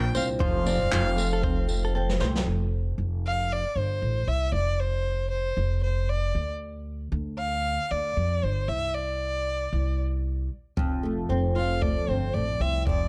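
A swung sixteenth-note groove at 116 BPM in 4/4 carries this heartfelt, easy-going acoustic pop passage in F major, cut from a longer piece. A boomy-kicked brush kit with handclaps and tambourine plays a fill from 1.9 s, then drops out and returns at 10.8 s alongside the up-front, double-tracked, fingerpicked flamenco guitar, while a woody, growly pizzicato upright bass holds the low end throughout. A rich, smooth bowed violin sings the melody with vibrato from start to finish, and a clean, compressed electric guitar adds quiet background arpeggios at the opening, all in a dark, warm small-room sound over chords moving from F to Dm, Csus2 and back to F.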